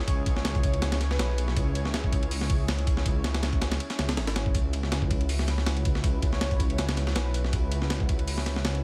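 Raw and atmospheric, this excerpt of drum and bass with a jungle feel runs at 161 BPM in C# minor, resting on a single C#m7 chord with a light 16th-note swing. An up-front breakbeat sampler kit with a thumpy kick and tape-warm grit drives it, backed by a very quiet, overdriven dusty soul kit adding tambourine, while a menacing, beating detuned saw bass sits forward and dark beneath a lush, chorused unison pad carrying a vintage 12-bit sampler texture. An airy, dreamy lead with vibrato and dub echo drifts in the background for two brief phrases, at 0.4 and 6.3 seconds, all in a dry, close-sounding mix.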